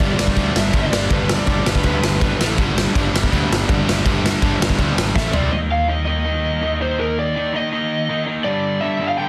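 Upbeat and energetic, this punk rock excerpt drives at 163 BPM in a straight 4/4, with a gritty, up-front garage drum kit of punchy kick, snare, toms and crash alongside a growly fuzz bass and a biting overdriven guitar riff tucked in the background. A bright, compressed distorted guitar riff runs throughout, a very quiet double-tracked distorted guitar joins at 2.6 seconds, and a dark lead guitar through a small cranked amp carries the melody in bursts. After a drum fill at 5.2 seconds, the drums, bass and biting guitar drop out at 5.5 seconds, leaving the two guitars over chords moving through A5, C5, Eb5 and G5 in a dense, dry, heavily limited mix.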